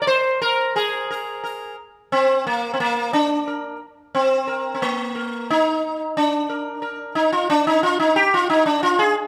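A moderately large studio reverb surrounds an up-front, buzzing, shimmering sitar with ringing sympathetic strings, played solo from 0.0 to 9.1 seconds in this radiant, meditative Indian classical passage in Bb raga khamaj at 89 BPM in straight 4/4, cut from a longer piece and ranging from Bb3 to D5.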